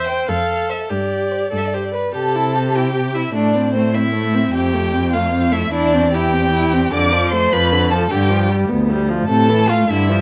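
Cheerful and lively, this quick classical-period string quartet excerpt in a rubato 6/8 sets a rich, smooth first violin melody, with vibrato, over a second violin's warm, focused line, a viola's accompaniment and an up-front cello bass with portamento and soft attacks, all captured by close, detailed microphones in light reverb as the harmony moves from F and Gsus4 toward a closing G7 and Am.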